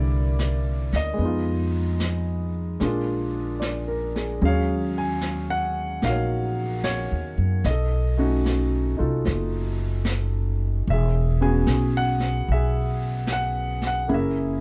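Piano and upright bass open this smoky, intimate jazz ballad together, settling into a slow 74 BPM swing in Eb minor. The concert grand sits up front with a natural, deep-bottomed tone, its audible action noise adding to the close, private feel as it comps through changes from C7 and Fm7b5 toward Bb7. The pizzicato upright bass is equally present, woody, warm and thumpy on steel strings, anchoring the low end. At 0.4 seconds a brushed drum kit joins from a distance, its medium-tuned snare and hi-hat sounding roomy and set back in a small space. From 4.4 seconds the harmony moves through Ebm11, B9 and E6, and the cut ends on Gb7 at 14.1 seconds. Light reverb and a dark, warm production give this fragment of a longer piece its late-night glow.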